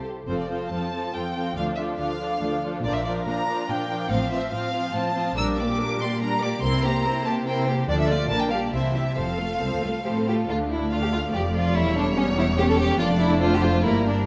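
In a quick, straight 3/4 at 142 BPM, this urgent, stormy classical-period movement for string orchestra, cut from a longer piece, sets a rich, smooth violin melody with vibrato above a second violin line and a distant viola accompaniment, while cellos and double basses join on the bass at 0.3 s. The double basses sit close, with a soft attack, portamento and expressive warmth. The music moves from F major into D minor at 10.5 s, all bathed in a wet scoring-stage reverb.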